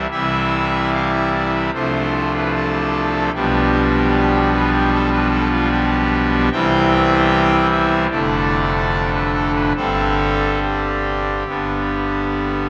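Majestic and serene, this chorale-style classical piece is a short segment cut from a longer work for solo pipe organ. The organ speaks through its trumpet stop, brassy and bright, with a romantic voicing that spans from F1 up to G5 and sits up front in the mix. The beats are uneven and the pulse breathes with rubato, giving the 4/4 phrasing a flexible, ceremonial feel. The harmony moves from C through Dm7/C and G7/B, returns to C at 6.5 seconds, then passes through Dm/F and Gsus4 before settling on G near 11.5 seconds. A vast, echoing cathedral space surrounds the organ with a long, wet reverb that carries every chord well beyond its sounding.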